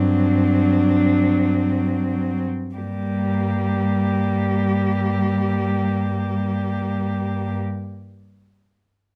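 A small ensemble of four muted cellos opens together in free time, a solemn, elegiac classical passage in G minor cut from a longer, lyrical piece. The melody sits on top in a veiled, up-front voice with vibrato and a smooth top, while a second cello carries a softer line further back, its soft attack and portamento giving it a distant, shadowed quality. Beneath them, a close accompanying cello with light vibrato and portamento and a bass cello holding a low G with gentle, soft-attacked bowing fill out the dark, con sordino sound. The opening phrase slows down over its first 2.8 seconds on a D7 over G, then settles onto G minor as the second section begins. Light reverb surrounds the bowed voices, keeping the mood hushed and mournful until the passage ends at 7.6 seconds.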